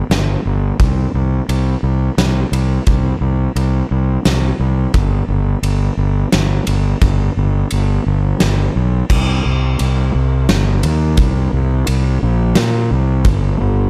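A growly, overdriven fuzz bass, fingered and up front, starts together with a punchy, big-room acoustic drum kit of kick, medium-tuned snare, crash and ride in this melancholic, cathartic post-rock excerpt in C minor at 87 BPM in 3/4, with a dry overall sound, a new section arriving at 9.1 seconds, the drums stopping at 13.4 seconds and the bass continuing to 13.9 seconds.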